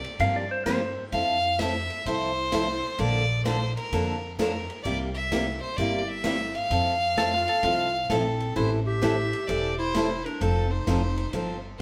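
Western swing country at 129 BPM in F major, this short, down-home cut swings on the eighth notes, with a clear, up-front bowed fiddle carrying the melody over a dark, smooth big-band drum kit, a woody, thumpy pizzicato upright bass and a bright, full-bodied picked acoustic guitar with audible finger squeak. A twangy, compressed lap steel slides in briefly near the start and again around 7.2 s, before a breathy, subtone clarinet with scooped notes takes a close-miked second line from 8.1 s. The band sounds live in one stone room with a wet reverb, as chords move from Fmaj7 through Bbmaj7 and C7 to a closing F7.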